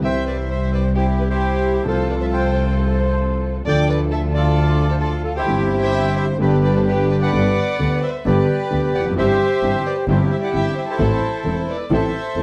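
A reedy bandoneon carries the melody of this playful, passionate tango from the start, up front with plate reverb, over a vintage grand piano with a deep bass, a close, bowed double bass with a nasal gut-string tone, and a violin second line full of vibrato and portamento. Very quiet, dark string stabs sit distant and lush behind them, and an airy concert flute with a soft attack adds a brief second line from 2.8 to 3.6 s. The rubato performance is heard from further back in a wet studio room, moving into a new section at 7.3 s in this cut from a longer piece.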